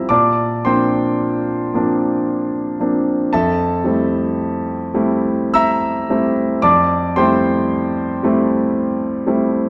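Impressionist classical solo piano in F major, hazy and luminous at a slow, rubato 56 BPM in 3/4, features an up-front concert grand with deep bass and long sustain ranging from F2 to E6, drifting through Bbadd9, Fmaj9 and Am7/F chords in a dark production bathed in a wet recital hall reverb, a short cut from a longer piece lasting 9.7 seconds.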